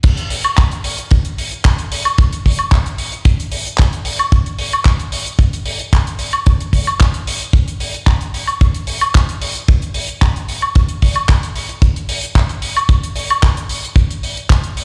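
The sound is close and barely reverberant, as if pumped through a big sound system in a bare, stone-walled room, with a small-room ambience clinging to the drums. This groovy, sunny nu-disco cut, taken from a longer piece, sits at 112 BPM in a straight 4/4 and stays in one section that plays as a drop from start to finish. A damped 70s drum kit runs throughout, its acoustic, mid-forward character placing crash cymbal, hi-hat, handclaps and woodblock up front in the mix. Alongside it, a dry, tight kick drum sits louder than the kit and drives the groove until 14.6 seconds, just before the kit finishes at 14.8 seconds.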